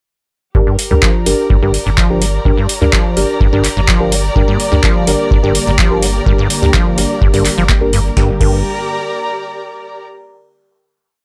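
A raw, trippy acid house piece with light reverb, built on a G minor chord at 126 BPM in straight 4/4. A squelchy, resonant sawtooth acid line with slides drives the groove over a round sine sub bass in dotted rhythm, while a deep four-on-the-floor kick pounds along with a booming analog drum machine whose crisp snare, handclaps, metallic hats and crash sit up front. Nasal, dark chord stabs moved in parallel with chorus and dub echo, a bowed string section with vibrato, and from 4.4 seconds a smooth detuned pad in the background fill out the sound, and the strings sustain through the final chord from 8.2 seconds to the end.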